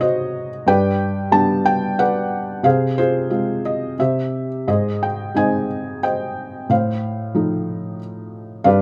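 A felt-muted upright piano plays alone in this short, moody classical fragment, its soft, intimate tone sitting up front with short sustain and audible action noise. The lyrical line moves in 3/4 at around 91 BPM with a rubato feel, ranging from G2 to A5 in F minor. Light reverb and close, detailed miking suit the bittersweet mood over about 8.8 seconds.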